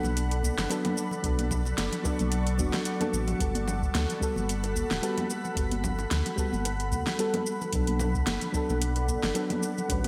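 A mellow FM electric piano accompanies this sunny, smooth sunset chillout excerpt, its soft, round tone warbling with chorus, vintage 12-bit sampler grit, a noise layer and a digital delay trailing each decaying chord. Beneath it, a shimmering ambient pad holds ethereal, detuned sustained chords with an octave-up sparkle and a granular, slow-blooming texture, while a round sine sub bass sits deep and steady at the bottom. The deep house drum kit brings a fat snare, metallic hats, shaker and congas at 111 BPM in 4/4, with a gentle swing on the 16ths, and an analog-sounding electronic kick joins at 0.4 s. Acoustic congas and bongos murmur in the background in a small room. The harmony moves from Bm7 to Gmaj9 at 3.4 s and returns to Bm7 at 7.7 s, all wrapped in a lush hall reverb and a bright 1980s-style digital sheen.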